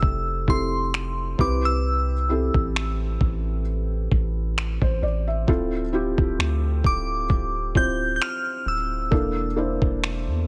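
A glassy synth bell carries the melody in this late-night, sensual contemporary R&B fragment, its crystalline FM tone ringing out high with a long release, treated with chorus and echoed by digital delay until it drops out at 9.5 seconds. Beneath it, a felt-muted upright piano supplies dark, intimate accompaniment, its thick felt giving a soft, mellow sound with the action noise of the instrument clearly audible. A long sustained 808-style bass sits deep in the low end with a round sine tone that blooms quickly and then decays. The dusty soul sampler-style drum kit pairs finger snaps with a thumpy kick, carrying compressed, gritty 12-bit sampler character over a lightly swung pulse. Every part sits up front in a dry, close room, moving through Fmaj7, Am9, Dm9 and C13/E before the cut at 10.5 seconds.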